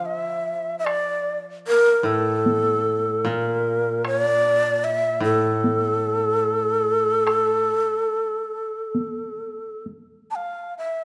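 Rubato in 4/4, this calm, austere fragment of Japanese traditional chamber music centres on an up-front, close-miked shakuhachi whose breathy, bright tone carries vibrato and a crisp, chiffy attack through the melody, while a woody, dry koto plucked with fingerpicks gives low accompaniment until 7.7 s and a close taiko ensemble struck with hard sticks sounds from 0.9 s to 10.1 s, the whole ensemble heard in a moderate recital-hall reverb.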